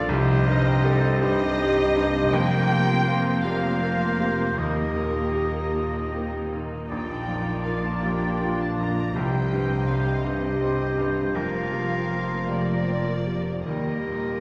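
In a rubato 6/8 feel, this uplifting, moving cinematic excerpt sets a veiled, con sordino violin section on the melody over a clear oboe, a mellow, distant clarinet and a second muted violin line, while a bright, brilliant baby grand piano, dark background violas, a ringing fingerpicked concert harp, very quiet close cellos and smooth-topped double basses fill out the harmony around a recurring Cm, Fsus4, Eb and Bb progression in a wet recital hall.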